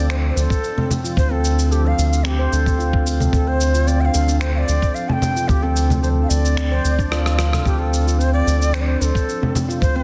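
An airy, vibrato-laden cedar flute carries the melody from the start over a blurred, very quiet granular cloud pad holding a Dm7 chord, ringing handpan arpeggios with sharp finger strokes, and a deep, round analog bass with sidechain pumping, with tape echo on both flute and handpan. This meditative, mystical slice of organic downtempo in D minor pentatonic moves at a straight 111 BPM, with gritty sampler-style finger snaps, cabasa, congas and rim click plus a thumpy electronic kick that enters at 0.5 seconds. The kick drops out for a drum fill at 7.1 seconds, all set in light digital ambience with a dense, heavily limited modern master.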